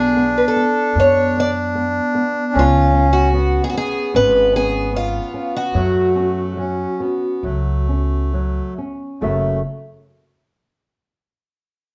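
In a rubato 4/4, this mournful, longing fado-style ballad fragment sets a shimmering, octave-doubled picked twelve-string guitar melody, boxy and up front with audible finger squeak until it stops at 8.3 s, over a reedy, dry-tuned accordion second line, the woody, thumb-plucked accompaniment of a flamenco guitar on old strings and a dark pizzicato upright bass on steel strings, the band captured live in one room with moderate large-studio reverb as the chords move from Bm through C#5 and F#m to F#m7 when a new section opens at 9.2 s.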